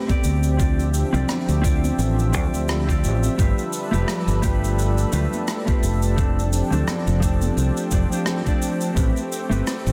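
Up-front fingered electric bass anchors this wistful sunset chillout excerpt with a lightly swung 16th feel, alongside a gritty, thumpy sampled kick, distant, roomy shaker and rim click, very quiet ringing congas, a dark, clean electric guitar with digital delay and a thick, warbling detuned pad with chorus, all moving through Dm11, G13, F6 and Am9 in a small room with light reverb.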